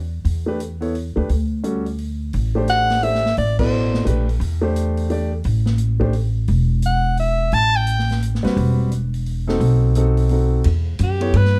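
A woody pizzicato upright bass opens this cool, spiritual modal jazz excerpt in A dorian, swinging in 3/4 at 173 BPM, joined almost at once by a vintage drum kit with a punchy kick and rolled-off top and a smooth grand piano, before a clear soprano saxophone with vibrato, subtone and scooped notes enters at 2.7 s in short phrases bathed in plate reverb, the band striking an accent at 3.5 s within a dry, dark production.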